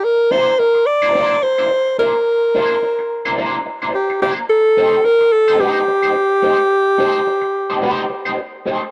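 A breathy alto saxophone with light vibrato and a soft subtone carries the jazz-inflected melody up front in this playful, gritty funk excerpt at 108 BPM with a gentle 16th-note swing, while a dark, slightly broken-up electric guitar, picked through wah and spring reverb, sits lower in the mix as accompaniment from 0.3 seconds over C9 moving to Am7b5 at 4.5 seconds, all captured in a dry, close 1970s-style studio sound with light reverb.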